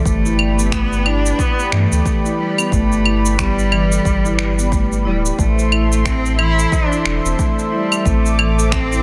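Light reverb and digital ambience under a dense, heavily limited modern master frame this hypnotic, meditative slice of organic downtempo at 90 BPM in 4/4 with a 16th-note swing, where a distant, bowed cello with smooth vibrato carries the melody through delay, a detuned sawtooth analog pad holds soft-attack chords with chorus and sidechain pumping, woody rosewood marimba arpeggios pass through a low-pass filter and delay, a round, dark sine sub bass sits up front, and a deep, layered electronic kick joins tape-toned shaker, claves and finger snaps from 0.1 seconds, as the harmony moves from G to A minor at 5.4 seconds.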